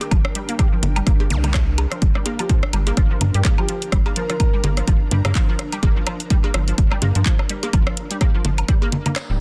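A clinical, sparse minimal techno excerpt opens with a squelchy, resonant blip pluck riff that pumps under sidechain with chorus and delay, a garage kit's handclaps and hi-hat, tape-warm electronic cowbell, woodblock, rim click and congas with a softly clipped snare, and a cloudy, evolving granular pad pulsing in the background. A rubbery square bass and a punchy, up-front kick arrive at once, a brief zap flickers at 1.3 seconds, and a breathy, flute-like synth lead with vibrato sings from 2.4 to 4.6 seconds. Later the kick drops out on a band accent at 9.2 seconds, all within a dense, heavily limited digital ambience.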